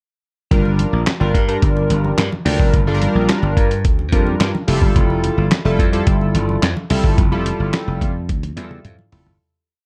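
The sound is dark and dry, giving this short early-eighties boogie funk piece a slick, late-night mood at 108 BPM in straight 4/4, set in G dorian and moving from Gm7 to Fmaj9. A lo-fi, sampler-style drum kit sits up front, compressed and muffled, with a thumpy kick, a medium-tuned snare layered with handclap, hi-hat and toms driving a mid-tempo boogie beat. The electric slap bass is bright, growly and punchy, playing a fat syncopated line with slides. A glossy, retro chorused polysynth with an evolving tone blends pulse and sawtooth waves with pulse-width modulation and a filter sweep, sounding syncopated chord stabs in drop2 voicing with grace notes. Very quiet congas, acoustic, vintage and band-limited, with a thin skin struck by hard hands, add a syncopated groove underneath. The piece starts fading at 7.2 seconds, and a drum fill arrives at 8.3 seconds before it closes at 9.4 seconds.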